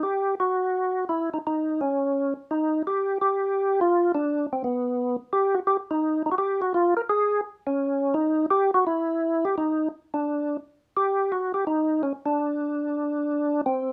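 Swinging and soulful, this brief jazz excerpt at 170 BPM in 4/4 features a solo percussive tonewheel organ alone from 0.0 to 13.9 seconds, clear and clean with third harmonic percussion, chorus vibrato and a slow rotary speaker, sitting up front in light reverb and moving into a new section at 10.9 seconds.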